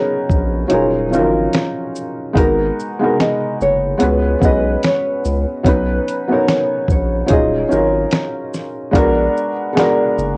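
This melancholic, reflective lo-fi hip hop excerpt opens on a dark, thumb-plucked nylon-string guitar carrying the melody, with tape echo and cassette tape coloring, beside a felt-muted upright piano. The piano sits up front, soft and intimate with a short sustain, laying mellow chords that move from Bmaj9 through Ebm11, Abm9 and Db7sus4. At 0.3 seconds a dusty, sampler-style drum kit joins with a thumpy kick, fat snare, hi-hat, shaker and finger snaps in a relaxed swung groove, its compressed hits roughened by 12-bit sampler grit and cassette tape. A deep, saturated sub bass enters alongside the drums, its thick sine tone sustaining beneath the harmony. Around 8.9 seconds the progression turns to a tense Bb7b9b13, and the whole performance sits in a small, homely room with a short reverb that suits the home cassette recording.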